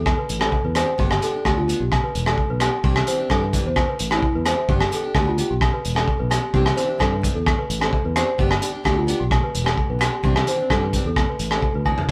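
A large, bell-like celesta opens this sunny, carefree highlife guitar band excerpt at 0.0 seconds, its delicate, sweet arpeggios ringing with a vintage, band-limited tone, joined at once by a fingered electric bass that sounds direct and amped. A crunchy breakbeat drum kit sits up front, dark and saturated with gritty grain, a tight kick, dark cymbals and a rolled-off top, working through crash, hi-hat, rim click and toms, while ringing agogo bells add vintage, band-limited percussion. At 0.4 seconds a fingerpicked, plugged-in steel-string acoustic guitar enters in the background, offering warm accompaniment. The band moves at a straight 130 BPM in 4/4, tuned to A4 = 437 Hz, swaying between Cadd9 and G. Light reverb gives the feel of a group playing live in one room, and a drum fill at 11.9 seconds closes the passage.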